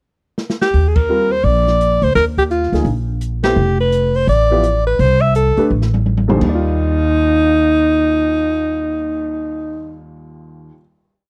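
An up-front alto saxophone carries this short modal jazz piece, its subtone, vibrato and scooped notes shaping song-like motif phrases with an open, searching mood. The quartet swings at 169 BPM in 4/4 in Eb major. A drum fill opens the pickup at 0.4 seconds, and the dark, smooth kit then keeps time with sticks on the hi-hat, adding a boomy kick, a medium-tuned snare, toms and rolled-off ride and crash cymbals. Pizzicato upright bass on gut strings gives a woody, thumpy two-feel foundation. A warm upright piano comps with syncopated quartal voicings, while band accents punctuate the phrase as the harmony moves from Ebmaj7 to F. A second fill leads to a held Ebmaj9 at 6.4 seconds, where the drums ring until 9.2 seconds in a dry, close 1970s-style small room.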